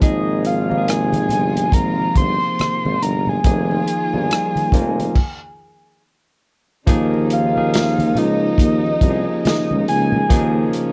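A swung sixteenth-note groove in 4/4 sits at the heart of this smooth, warm neo-soul and R&B excerpt, carried by a crunchy, saturated breakbeat kit of kick, snare, rim click, hi-hat and crash that sits up front with dark cymbals and a rolled-off top. Low-tuned, damped congas add soft-handed texture in the background, while a vintage tuba takes the bass role with scooped, jazz-style notes. A barky tine electric piano, bright and clean through a combo amp, plays the accompaniment over chords moving from Ab69 to Fm11 and then Eb7sus4. A lush bowed string section holds sustained chords in the background, and above it all a round, octave-layered synth lead with a sub octave, vibrato, chorus and slapback echo sings the melody. The groove halts in a stop from 5.2 to 6.9 s before a new section begins, all captured in a dry, close studio sound with a 1970s character.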